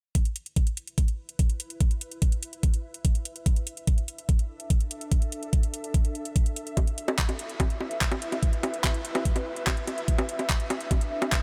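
A knocking electronic kick drum sits up front from 0.1 s, tape-warm and layered, driving this hypnotic, alien stretch of psychedelic trance in a straight four. Beside it, a garage-style electronic drum kit adds bongos, handclaps and metallic hi-hats, also close and forward in the mix. At 1.7 s an ethereal pad begins to fade in beneath the drums, built from detuned sawtooth and triangle voices in unison, with a slow attack, long release and a mellow, airy glow. Ensemble chorus and built-in reverb give it extra shimmer, while sidechain pumping makes it breathe against the beat. The harmony moves from E5 to D5 at 3.5 s. A light reverb surrounds the whole mix, and the clip is cut from a longer piece.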